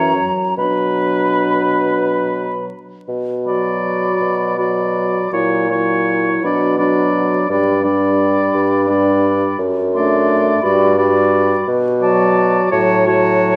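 A dark recital-hall sound with vinyl crackle frames this yearning, elegiac slow romantic movement for wind quintet in a rubato 6/8, cut from a longer piece, where an airy, hollow concert flute with vibrato carries the melody above a distant oboe second line, a clear close-miked clarinet and a soft-attacked, roomy French horn in accompaniment, and an up-front bassoon anchoring the bass.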